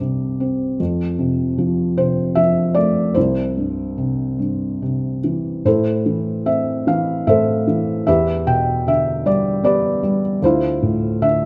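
A felt-muted upright piano carries this short classical passage alone, its soft, dark tone sitting close and intimate in the mix. The lyrical playing moves at 76 BPM in a gentle 3/4 with a rubato feel, ranging from C2 to G5 and drifting through chords such as Csus2, F and C before turning toward Am at 5.7 seconds, then Em7 and Dmadd9. A moderate reverb from a scoring stage surrounds the peaceful, calm mood across the 11.5-second fragment, which is cut from a longer piece.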